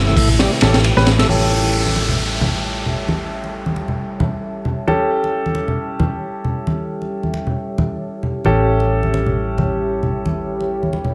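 Funky and swaggering, this breakbeat clip opens with a crunchy, saturated drum kit up front, its punchy kick dropping out from 0.4 s, alongside a slow-rotary tonewheel organ riff with key click and tape echo, both stopping at 1.3 s. Low-tuned congas with soft hands, a round hollow-body bass through a low-pass filter, and a deep, detuned ambient pad with chorus and sidechain pumping carry on throughout. Present grand piano stabs with long sustain and tape echo come in at 0.6 s and take a filter sweep from 1.3 s, as an electronic downlifter runs from 1.3 to 4.9 s, all in a small, lightly reverberant room.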